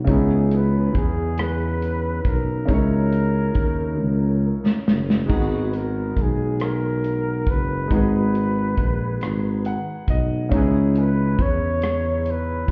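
This sultry, late-night slow R&B excerpt in 6/8 opens with a clear grand piano and a dark tuba, sitting at 46 BPM over a C#m9 chord that moves to G#m9 at 5.3 seconds before returning. The tuba carries the bass in a smooth, classical manner and sits up front, while the piano comps intimately with audible action noise and long sustain. A mellow flugelhorn enters almost immediately with a jazz-inflected melody colored by vibrato and a slapback echo. A soul drum kit with a tight kick, medium-tuned snare, rim click, hi-hat and dark cymbals holds the groove, adding a fill at 4.0 seconds, and the piano takes its own fill at 9.2 seconds. The whole recording sounds muffled, as if heard through a wall, with the reverb of a stone room.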